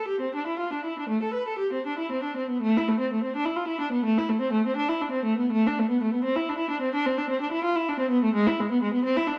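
Classical, baroque-style suite movement for unaccompanied viola, solemn and grave in a rubato 12/8 feel, heard as a brief cut from a longer piece. A single bowed viola plays alone and up front, its rich tone shaped by vibrato and expressive portamento, with a first section giving way to a second at 2.6 seconds. A stone room's reverb lends the dark production a distant, echoing air.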